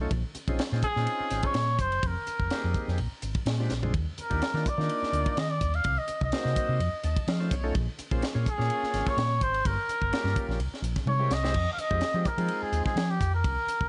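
Funky and driving, this electric jazz fusion excerpt moves at 126 BPM in F minor with a swung sixteenth-note feel. A cup-muted trumpet carries the melody from 0.8 seconds, its tone veiled and soft-edged with vibrato and a vintage jazz character, sitting up front as the solo voice. Beneath it, a bright, reedy tonewheel organ supplies the accompaniment through light overdrive and a slow rotary speaker, its key click audible, and it steps out with a short fill around 6.8 seconds. A fingered electric bass gives a dark, round, punchy amped foundation, while a tight funk drum kit in a small room drives the groove with a high-tuned snare, tight kick, hi-hat, ride and crash, adding fills around 3.7 and 11.1 seconds. Extended chords such as Bbm11, Bb13 and F7b13 give the harmony a lush, searching color before the passage settles on Fm9 at 11.5 seconds, all framed by light reverb.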